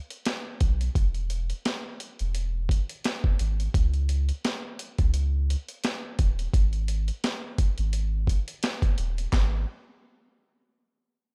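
A swung boom-bap groove at 86 BPM in G# minor drives this moody, dark hip-hop excerpt, with a gritty, pitched-down sampler kit of thumpy kick, high-tuned snare, hi-hat and handclaps sitting up front from 0.1 s alongside a deep, round, mellow sub bass that enters at 0.6 s, all in a mix with little reverb.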